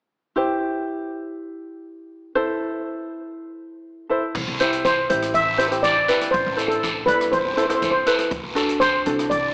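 A light, fingerpicked ukulele opens this bouncy, carefree calypso excerpt at 121 BPM, moving from C to Am before a woody, thumpy pizzicato upright bass, an open jazz drum kit with dark cymbals and a boomy kick, and a raspy, distant guiro join at 4.3 seconds, while a mellow, shimmering lead steel pan carries the melody up front from 4.8 seconds, the whole piece sitting in a moderate concert hall reverb with a small speaker sound.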